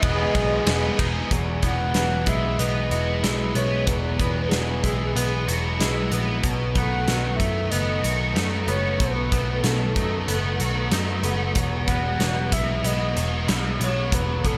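A breathy, flute-like synth lead floats over this blissful, wistful shoegaze and dream pop rock excerpt, its soft attack and sustained tone carried by chorus, vibrato and a slapback echo as it sings between G#4 and F#5. Underneath, a cranked stack guitar drives an overdriven riff thickened with analog chorus, while a dark, slightly broken-up guitar through a small old amp plays a riff in the background, trailing reverse reverb. A clean, twangy, scooped electric guitar plays fingered arpeggios in the background, shimmering with analog chorus and slapback echo. A vintage foam-muted bass gives round, punchy low notes, and a big acoustic rock kit with a punchy kick, medium-tuned snare, hi-hat and ride keeps a straight 4/4 at 94 BPM. In E major, the harmony opens on Emaj7, settles into Eadd9 at 1.3 seconds, moves to B7 and returns to Eadd9, all in light reverb and a small room ambience.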